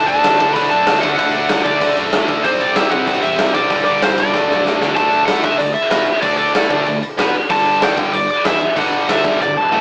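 An up-front, overdriven cranked stack guitar carries the melody through this energetic, rowdy punk rock excerpt at 190 BPM, shifting from D mixolydian to D major at 5.0 s. Beneath it, a double-tracked high-gain guitar and two tight, picked distorted guitars in the background drive the riff, while a growly, overdriven picked bass sits low. A punchy big rock drum kit with bright cymbals plays up front and fills at 4.3 s and 9.4 s, all captured in a rough rehearsal-room sound with tube saturation and a small-speaker edge.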